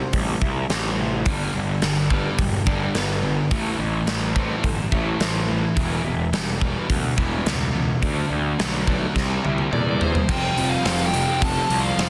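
A lush, chorused twelve-string electric guitar chimes out arpeggios from the first moment, joined almost at once by a growly fuzz bass and a punchy, up-front rock kit, with a thick fuzz guitar riff crashing in at 1.3 seconds over a C, G, Am, Em, D progression in G major at 106 BPM. This bittersweet, anthemic alternative rock cut is dense and dry. A drum fill begins at 9.2 seconds, and a dark, smooth overdriven lead melody enters over it at 9.7 seconds. A background semi-hollow guitar riff enters at 10.3 seconds on a shift to Fadd9.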